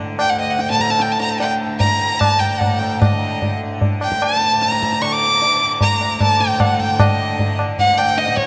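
Radiant and serene, this brief passage of Hindustani classical music is cut from a longer piece and moves in a straight 5/4 at 150 BPM, speeding up as it goes. A bright, buzzing tanpura opens the passage, its softly plucked drone shimmering low beneath everything that follows. At 0.2 seconds a single bowed violin enters up front, its clear, biting tone carried by vibrato and an airy bow as it sings an intense melody high in its range. The low-tuned tabla comes in at the same moment, close and dry with a short ring. A cathedral reverb with a long tail places the performance in a vast, echoing space.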